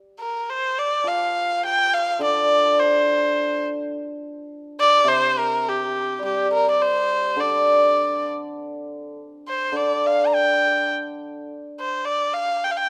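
Rubato and loosely pulsed around 104 BPM in 4/4, this graceful, wistful fragment of Chinese chamber music, cut from a longer piece, sets a single bowed erhu, nasal and earthy with light vibrato and portamento, up front on the melody from 0.2 seconds, over a shimmering, ringing hammered dulcimer accompaniment in its low register from 1.0 to 11.5 seconds, captured with close, detailed microphones and light reverb.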